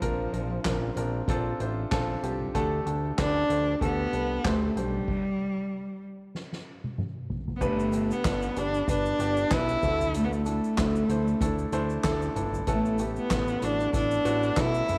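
Uplifting and warm, this piano-driven pop passage, cut from a longer piece, puts a rich, bowed cello melody up front, expressive with vibrato and portamento and trailed by slapback echo. Beneath it sit a polished grand piano accompaniment, a fat, saturated analog bass and a soft-mallet drum kit with a boomy kick and dark cymbals. The piano slips in an early fill, the music breaks into a stop at 5.1 seconds with a drum fill inside it, and a grainy, bright tube shaker joins quietly in the background from 7.6 seconds, all framed by light reverb and small-room ambience over a gently swung groove.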